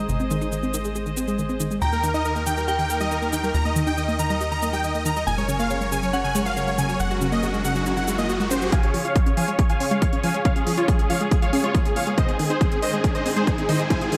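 Soaring and uplifting, this excerpt of uplifting trance in Db major moves at 139 BPM in a straight 4/4, opening with distant, earthy chamber strings holding sustained chords, lush detuned pluck arpeggios with tape echo, a tight, punchy sequencer bass and overdriven electronic shaker and hi-hat, all but the percussion pumping to the sidechain. At 1.8 s huge supersaw chords carry the melody up front through a low-pass filter and tape echo, while a glassy FM bell with chorus, tremolo and digital delay warbles in the background until 6.9 s, when a riser begins. From 8.7 s the bass drops out and a heavy, overdriven kick enters up front in a build-up as a filter sweep moves over the pluck, all set in a dark production with a moderate recital hall reverb.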